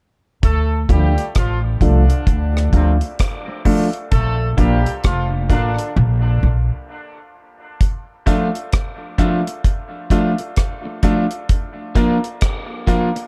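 A woody, thumpy upright bass sits up front from 0.4 seconds in this spacious, heavy dub reggae piece in D minor at 65 BPM, alongside a dry reggae drum kit with a tight kick, hi-hat and rim click; a slightly broken-up, picked electric guitar and intimate concert grand piano stabs, both run through a low-pass filter and dub echo; and a clear, vintage horn section with light vibrato and its own dub echo that drops out at 5.9 seconds, the whole framed by a dark production with light studio reverb.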